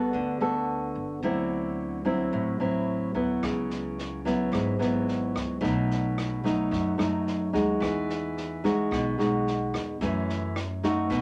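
A relaxed, sunny bossa nova opens with nylon-string guitar and upright bass together, the guitar thumb-plucked and up front with the fresh-stringed, classical ring of its tone. Beneath it the pizzicato upright bass sits lower in the mix, woody and thumpy with the soft give of gut strings. At 3.4 seconds an open jazz drum kit joins quietly, its kick, rim click and medium-tuned snare sounding dark and smooth, with a boomy kick and a rolled-off top. The harmony moves through rich extended chords, from Gmaj9 and D9 through C#m7 and B7 to a resting Emaj9 before turning to F#m7. A small, wet room reverb gives the ensemble an intimate, close space, and the passage is cut from a longer piece.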